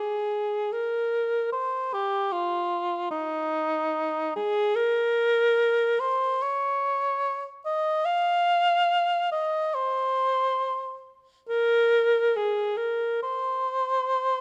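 A close, detailed recording places a mellow cor anglais up front in a recital hall with moderate reverb, catching its tender vibrato. This serene, nostalgic classical excerpt, cut from a longer piece, has the instrument playing entirely alone in free, expressive rubato around 54 to 79 BPM in 4/4, its line moving between Eb4 and F5. The unaccompanied voice sustains an unhurried, reflective air across its 14.4 seconds.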